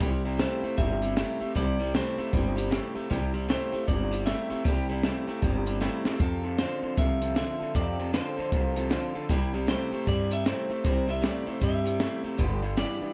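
A swung 4/4 groove at 155 BPM drives this upbeat, retro rockabilly excerpt in C major, moving from C to F to C and on to G. A compact cocktail drum kit sets the beat with hi-hat, a punchy kick and a high-tuned snare, its rolled-off top sounding dark and smooth in a small room, with a short drum fill at 5.8 seconds. A woody, thumpy upright bass on gut strings is played pizzicato and sits up front, beneath a twangy, slightly broken-up electric guitar riff from a small old amp and a bright picked steel-string acoustic guitar playing accompaniment with plate reverb. From 0.4 seconds a second compressed electric guitar carries the melody in a higher register, its picked tone colored by warbly pitch drift, tape echo and plate reverb. Light reverb holds the whole excerpt together with a lively, vintage feel.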